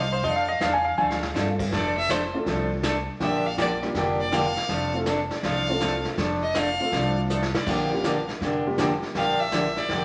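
Bathed in a wet, large studio reverb with a softened top end, this cheerful, down-home western swing excerpt in F major swings along at 162 BPM. A dark, clean lap steel guitar with volume swells and a barely audible hollow-body archtop guitar sound only briefly at the start, and a clear, biting fiddle with light vibrato then takes a solo from 1.7 seconds. It sits up front over a bright, jumbo steel-string acoustic guitar, a woody upright piano, a thumpy pizzicato gut-string upright bass, and a vintage brush kit with dark cymbals and a punchy kick that plays fills at 1.0 and 7.3 seconds.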